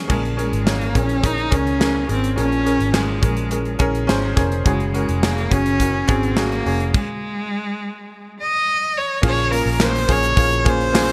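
A straight 4/4 pulse at 105 BPM drives this earnest piano-led pop excerpt in Bb minor, with a modern drum kit of tight kick, medium-tuned snare, hi-hat, handclaps and crash set in a small room with gated reverb, over a dark, round, foam-muted fingered electric bass. Up front, a woody, slightly detuned upright piano plays accompaniment from Bbm7 to Gbsus2 while a single bowed cello carries the melody with rich vibrato. The whole arrangement halts in a stop from 6.9 to 9.2 seconds before a new section returns to Bbm7, all wrapped in light studio reverb and bright 1980s-style digital production.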